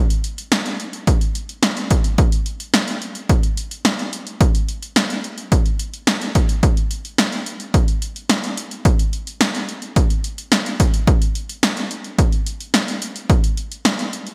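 Driving and nocturnal, this short pop excerpt at 108 BPM in a straight 4/4 features an analog drum machine playing hi-hat, kick drum and snare drum from 0.1 s to 14.3 s. The kick and snare hit punchy and tape-warm, sitting up front with gated reverb and the character of a small room. The overall sound is bright 1980s-style digital production with light reverb.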